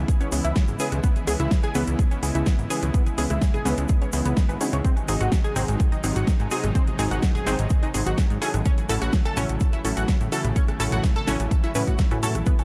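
A punchy, overdriven electronic kick sits up front in this expansive, dreamy progressive house excerpt, joined by a pop kit with a fat snare, metallic hats and rim clicks, very quiet congas and woodblock, and a grainy egg shaker in the background. A funky sawtooth and square-wave bass with ring modulation and sidechain pumping plays under a smooth, detuned pad with chorus and tremolo, a tight, driving sequenced synth playing arpeggios through delay, and lush unison stabs carrying vintage 12-bit sampler grit. The chords move from C#m7 to G#7 at 4.8 seconds and F#m7/A at 8.7 seconds, set in light digital reverb with a dark, warm production.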